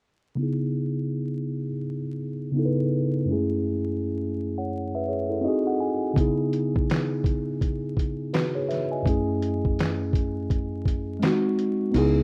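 Lo-fi hip hop at 83 BPM in C# minor, with a reflective, hazy mood and a swung 16th-note feel, cut from a longer piece. A mellow tine electric piano opens alone at 0.4 seconds, its clean tone given a cassette-tape character and a low-pass filter sweep as it moves through C#m7, F#m9 and G#7, with a short fill before the drums arrive. At 6.2 seconds a sampler-style kit enters, compressed, pitched down and muffled, with a thumpy kick, a medium-tuned snare, hi-hat, handclaps and crash, re-recorded in a small room. Near the end the kick drops out at 11.9 seconds as a deep, round, dark dub bass enters on a low C#. The mix is dry and rough like a home demo, dusted with vinyl crackle, with every part sitting up front.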